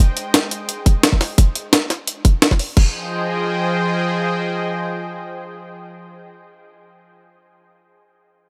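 A straight, rolling liquid drum and bass groove drives this short, melancholic fragment, cut from a longer piece and opening on a drop. A sampler-style breakbeat kit with crash cymbal, hi-hat and a high-tuned snare comes in at 0.2 seconds, sounding gritty, compressed and pitched up, and a tight, layered electronic kick joins it at 0.9 seconds; both sit up front. The drums fall away at 2.8 seconds, leaving the pad to carry on alone until 6.3 seconds. That pad is a lush, thick sawtooth unison sound with detuned voices, a vintage warble from chorus and sidechain pumping, holding sustained chords with a slow attack and long release. Its bright tone rests on a rootless Fm7 that gives way to a full Fm7, and the mix stays dry.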